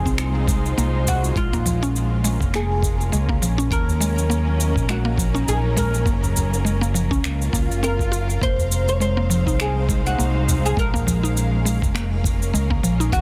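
Organic downtempo in Bb minor at 102 BPM with a swung 16th-note feel, this mystical, warm excerpt from a longer piece sets a plectrum-plucked oud melody, with delay and shimmer reverb, over dark, distant bowed strings and a round FM mallet-like pluck playing chorused arpeggios. An up-front, amped fretless electric bass with lush chorus and sidechain pumping sits under a gritty, thumpy sampled kick, tape-tinged electronic shaker and finger snaps, and a deep, very quiet udu that plays from 1.1 to 11.2 seconds. The chords move through Fm7, Bbm7, Ebm7 and Gbmaj7, a faint electronic swell appears in the background at 7.4 seconds, and the mix is dense and heavily limited with light reverb.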